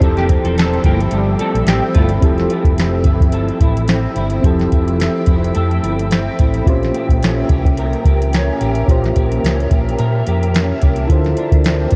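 Indie pop with a bedroom-pop haze, this laid-back, dreamy excerpt moves at 108 BPM in F major with a gentle sixteenth-note swing, drifting from Fmaj9 to Bbm6 at 6.7 seconds and on to Dm7. A soft vintage rhythm box sits up front, its dry deep kick, crisp snare and metallic hats anchoring a round, dark hollow-body bass played with the fingers. An electric guitar through a small old amp adds slightly broken-up picked accompaniment coloured by ensemble chorus and vibrato, while a reedy electric piano shimmers with fast tremolo and cassette-tape grain. Above them a granular cloud pad holds blurred, evolving chords with a moving notch and its own reverb, mellow yet full-bodied. A clean semi-hollow guitar offers a brief picked second line, with chorus and delay, from 0.2 to 2.1 seconds, and the whole mix is soaked in a huge ambient reverb and the soft wear of cassette tape.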